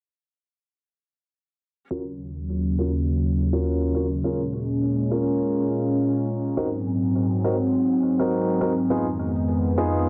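This glitch hop excerpt opens at 1.9 seconds with clear concert grand piano stabs, sitting up front with audible action noise and long sustain, passed through a low-pass filter and digital delay. A very quiet electronic hi-hat with metallic, tape-warm character and a hushed, bowed studio string section with vibrato arrive at the same moment. At 2.2 seconds a warbling, nostalgic pad joins with sustained chords, its lo-fi sawtooth tone softened by chorus and built-in reverb. The mood is playful and gritty, moving at 103 BPM in 4/4 with a 57% swing on the sixteenths, in Eb minor through Ebm7, Bbm7, Ab7 and Fm7b5. A filter sweep runs across the passage, and the dense, heavily limited master carries a moderate plate reverb and small room ambience.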